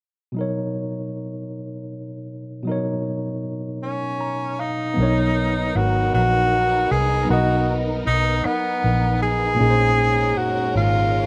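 Yearning and late-night in mood, this fragment of a slow R&B piece sways in 6/8 at 52 BPM, tuned to A4 = 439 Hz. A worn, slightly out-of-tune tine electric piano opens alone at 0.3 s, lightly overdriven through its built-in speakers and sitting up front as it lays down a Bmaj9 chord. At 3.8 s a pop-style tenor saxophone solo enters with vibrato and a punchy tone, while the piano adds a fill alongside it. From 5.0 s the second section brings in a dark, foam-muted, round electric bass, played fingered with an amped vintage sound, and a lush, bowed studio string section holding smooth, even chords with a warm sheen. The harmony moves to Bbm11 near the end, and the recording is dry, with little reverb and an open-air sound.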